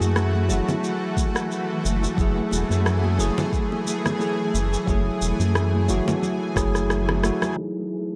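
Sunset chillout in F# dorian at 89 BPM with a lightly swung 4/4 feel, this smooth, warm excerpt sets a clean tine electric piano, filtered and echoed through delay, over a shimmering, ethereal ambient pad with chorus and octave-up sparkle. Beneath them sit a round, mellow analog bass up front, layered electronic shaker, rim click and conga patterns, and ringing high-tuned acoustic congas played with soft hands. A deep electronic kick enters at 1.2 seconds and drops out at 6.9 seconds during a drum fill, ahead of a band accent and a move from F#m9 to Emaj9 at 7.6 seconds. A barely audible twinkling granular texture appears at the very end, all set in light digital ambience.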